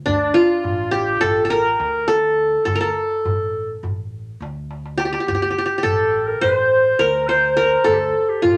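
Melancholic and full of longing, this short Turkish makam ensemble passage in 9/8 is led by an up-front, bright, plectrum-plucked qanun carrying the melody, while a smooth, classical-style clarinet traces a second line alongside it. A woody pizzicato upright bass sits low in the mix, and a large, deep metal-shell darbuka plays crisp, close and dry, breaking into a drum fill from 4.7 to 5.3 seconds. The ensemble is wrapped in a wet studio ambience, and the cut comes from a longer piece.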